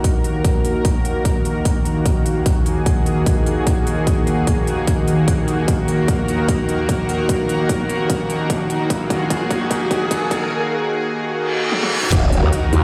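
A growling, wobbling bass, saturated and up front with a formant filter, overdrive and chorus, arrives with the impact at 12.1 seconds to cap this menacing, aggressive heavy wobble dubstep build-up, cut from a longer piece. The track runs at 149 BPM in Eb minor with a half-time feel and a light swing on the sixteenths. Before the drop, a lush, thick pad of detuned sawtooth unison voices holds an Eb minor chord with a slow attack and a warbling vintage chorus, pumping against the kick, while a filter sweep runs across the whole build. A punchy, tape-warm electronic kick and a big-room dance kit with crisp hats, crash cymbal and toms sit in studio reverb, with drum fills starting at 5.7 seconds and returning just before the drop. From 7.9 seconds a riser, then a reverse cymbal and the final impact, sit in the background. The recording carries a large studio reverb and digital ambience, like a big sound system playing in a bare room.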